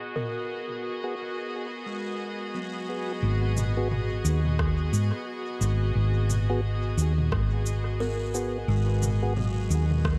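Ambient dub with a spacious, meditative mood and a lightly swung sixteenth-note feel, this short cut from a longer piece opens on a rich, earthy chamber string section holding bowed chords with light vibrato, set distant and softened by a low-pass filter. A buzzing kalimba with woody, fingertip-plucked tone plays close, dry arpeggios through a filter sweep and dub echo, while an organic electronic kit of cabasa, rim click and toms is treated with the same echo. At 1.0 seconds a mellow tonewheel organ adds clean stabs with audible key click, turning through a slow rotary speaker and dub echo. The dark, round hollow-body bass arrives up front at 3.2 seconds, and a deep, tape-warm electronic kick, re-recorded in a small room, joins in the background at 4.6 seconds. Light reverb and a digital ambience surround the mix, with a low-pass filter shading the whole.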